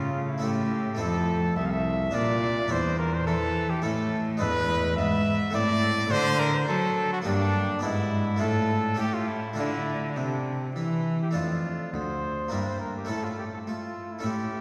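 A solemn, flowing baroque-style sonata movement with continuo in D minor, moving at 105 BPM in 3/4, where a warm solo trumpet carries the melody up front over a rich, bowed cello bass with focused vibrato and a brilliant, plucked Italian-style harpsichord with octave strings, all heard from further back in a reverberant concert hall in this short passage cut from a longer piece.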